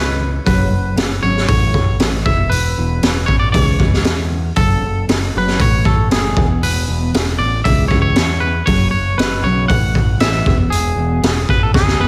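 Brooding and cathartic, this short passage of quiet-loud alternative rock moves at 117 BPM in a straight 4/4, set in F# minor. A clean, twangy electric guitar carries the melody with a slapback echo, while a dark, woody fingerpicked steel-string acoustic guitar with old strings sits in the background, spinning low arpeggios through tape echo. A growling picked electric bass, overdriven and direct, anchors the low end. The raw garage drum kit enters at 0.5 seconds, up front and saturated, with a high-tuned snare, a boomy kick, hi-hat and a rolled-off top, and it closes with a drum fill from 11.7 seconds. The chords cycle through F#5, A, E5 and C#m, and a concert hall reverb gives the whole an arena-sized sound.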